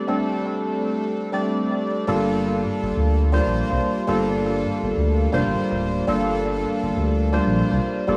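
A hollow, percussive organ stab with analog chorus and tape echo opens this moody deep house excerpt at 120 BPM in G minor, tuned slightly flat, sitting up front over a D7sus4 chord before a smooth, dark sawtooth-and-square synth bass with tube saturation and ring modulation drops in at 2.1 seconds on Gm9, all bathed in spring reverb and small-room ambience in an echo-heavy mix with a gentle 16th-note swing.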